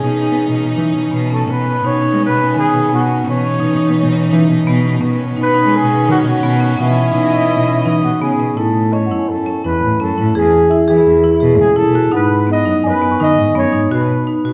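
Set in a straight 5/4 at 169 BPM, this shimmering, restless piece of contemporary chamber music, cut from a longer work, pairs a warm, jazz-style flugelhorn melody with soft, scooped notes and vibrato against woody marimba arpeggios from rosewood bars and an intimate, airy sul tasto cello bass line. A rich, earthy chamber string section holds sustained chords over a C#madd9/B to Badd9 sway until 8.6 s, while a delicate, bell-like celesta glints in the background from 2.5 s. After the strings drop out, the harmony moves through Aadd9, E and G#m, and the whole ensemble sits back in a wet recital hall.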